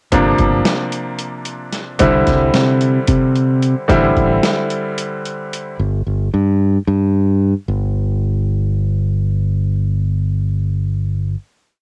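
Brooding and tense, this short progressive instrumental in 7/8 pairs brilliant, short-sustained quartal piano chords with a cassette-tape tint and a gritty, overdriven sampler-style boom bap kit with a thumpy kick and high-tuned snare, joined by a punchy, up-front fingered electric bass locked to that kick. Once piano and drums fall away by 5.8 seconds, the bass carries on alone to a final note lasting until 11.3 seconds, the whole piece set in a light home-cassette reverb.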